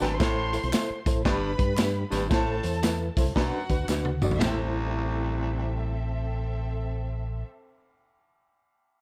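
A crunchy, saturated breakbeat drum kit sits up front in this short cut from an uptempo 1960s-style soul track at 114 BPM in A dorian, with a swung 4/4 feel that sounds driving and urgent. Its tight kick, medium-tuned snare, toms, hi-hat and dark ride cymbal have a gritty, rolled-off small-room sound, and a drum fill at 3.9 seconds leads into the second section before the kit drops out at 4.6 seconds. A round, punchy fingered electric bass anchors the low end. A distant, raspy baritone saxophone carries a riff with scooped notes and vibrato until 6.0 seconds. A reedy, worn electric piano with fast tremolo plays accompaniment through its built-in speakers, sounding slightly out of tune, while a lush symphonic violin section bows a smooth, focused second line. Tambourine, shaker and group handclaps sit in the background over a light reverb, as the harmony moves through Am, G, Am and Bm before returning to Am.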